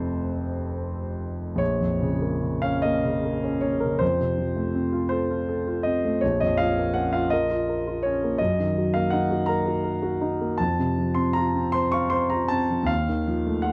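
Dark, lightly reverberant sound frames a solo concert grand piano, up front with deep bass, an open tone and long sustain, as this mournful, melancholic romantic nocturne fragment unfolds in a rubato 6/8 and settles at 1.6 seconds into a sorrowful passage that moves from minor chords toward a dominant seventh by 12.9 seconds.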